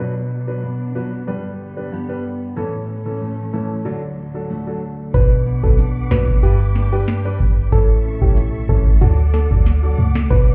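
Tough and bouncy, this dancehall excerpt, cut from a longer piece, moves at 93 BPM in a straight 4/4 in B minor, cycling through Bm, G, A and D. It opens with a clear concert grand piano, its action noise audible, comping alongside lush, vibrato-rich symphonic strings holding sustained chords and a full-bodied nylon-string guitar fingerpicking arpeggios. The piano and strings share a sidechain pumping effect, and a low-pass filter dulls those two parts and the guitar. At 5.1 seconds a booming analog drum machine arrives up front with a deep kick, crisp snare and metallic hats, joined by a clean, sine-like 808-style bass and a soft, round, detuned pluck carrying the melody through a chorus effect. The whole track sounds heard muffled through a wall, with club reverb and small room ambience, running until 10.5 seconds.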